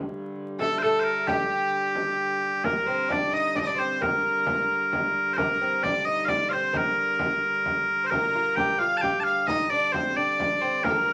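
Piercing bagpipes carry the melody up front in this mysterious, driving medieval dance in a straight 6/8. A dark, woody hurdy-gurdy drone sounds distant from the very start, and at 0.6 seconds the bagpipes arrive along with a biting, nasal bowed fiddle and a delicate fingerpicked lute on gut strings as second lines, plus a vintage, band-limited frame drum. The fragment sits in a wet studio ambience under a layer of vinyl crackle.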